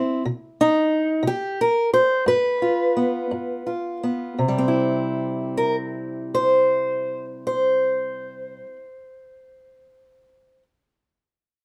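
Acoustic country blues in C major at a slow 53-62 BPM in 12/8, this soulful, rollicking excerpt features a lone fingerpicked steel-string parlour guitar, boxy with fresh strings and sitting up front in a moderate studio reverb, playing from G2 to C5 as it slows down through the opening 4.4 seconds over C5 and G7 before settling on C.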